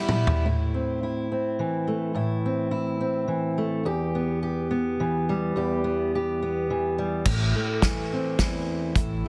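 In a straight 3/4 at 106 BPM, this stirring, yearning slice of indie folk in A minor opens on a brief drum fill and a flash of bright, shimmering twelve-string guitar before a dark, woody fingerpicked steel-string guitar takes over, sitting up front and moving from Am to Em at 3.9 seconds. At 7.3 seconds the arrangement builds back onto Am as the punchy, small-room drum kit returns with another fill across crash, toms, snare, hi-hat and a softly clipped kick, joined by a round, amped electric bass on a low A. Light studio reverb frames a dense, heavily limited modern master.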